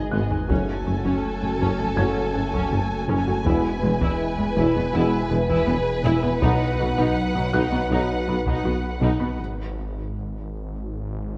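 A cinematic hybrid orchestral and electronic film score cue, cut from a longer piece, with a futuristic, vast mood in a straight 4/4 feel. Taiko drums played with heavy sticks open with a fill in the first half second, close and dry, before a lush bowed string body settles in: violins carry an expressive, vibrato-rich melody over a second violin line, violas with portamento sit behind them, and a woody double bass section and a smooth, very quiet cello section anchor the low end alongside a mellow tuba. From 0.5 s, distant, roomy French horns and a mellow trombone section hold sustained chords as the harmony moves from F#madd9 to E and then B. Electronic layers thread through the orchestra: a swirling phased analog pad with chorus, a tight, nasal sequenced synth playing driving arpeggios, and a snarling, growling distorted saw bass, while a felt-muted upright piano adds soft, intimate high notes through a delay, its action noise audible. 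At 9.4 s the ensemble breaks off and only the distorted bass carries on until 11.4 s, all set in a concert hall reverb and coloured by worn, warbling cassette tape with pitch drift.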